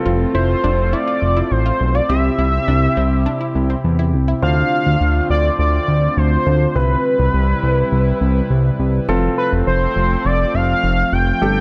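A straight 4/4 pulse drives this cool, propulsive pop excerpt, anchored by a fat, thick analog bass with a fast-attack sawtooth tone sitting up front. From 0.3 seconds an octave-doubled lead carries the melody, bold and bright, its wave-folded sawtooth sound colored by chorus, vibrato and digital delay. A shimmering, retro pulse-width pad holds sustained chords with a slow attack and long release, while a concert grand piano plays accompaniment in the background, intimate and polished, its action noise audible. An analog pluck adds nasal, detuned arpeggios with a filter sweep, treated with chorus, phaser and delay, before dropping out at 4.4 seconds as the harmony moves from F and C to Dm7, Cmaj7 and back to F. Light reverb lends the mix a gentle sense of space.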